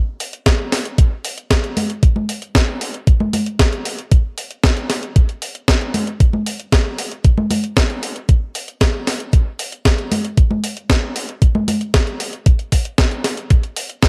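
Italo disco in straight 4/4, melodramatic and nostalgic, this excerpt is carried entirely by drums. A clean 12-bit digital drum machine enters at 0.2 seconds with congas, hi-hat and a medium-tuned snare bathed in gated reverb, joined at 0.5 seconds by a thumpy, sampler-style electronic kick that sits louder in the mix. Both parts have a tape-warm, up-front character from being re-recorded in a small room, and the overall sound is fairly dry.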